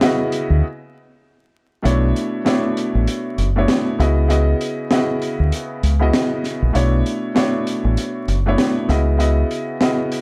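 Boom-bap hip-hop at 98 BPM with a 59% swing on the sixteenths, gritty and dark, cut from a longer piece and wrapped in vinyl crackle and small room ambience. A mellow, worn grand piano with audible action noise and short sustain carries the C#m11 and Bm11 chords, its tone shaded by cassette tape and filtering, while a crunchy, saturated breakbeat kit with a high-tuned snare and rolled-off top sits up front beside a round, deep dub fingered electric bass that enters at 0.5 s. After a break that begins at 0.6 s, the kick is muted from 1.8 s, leaving hi-hat and snare to drive the groove alongside the bass and piano.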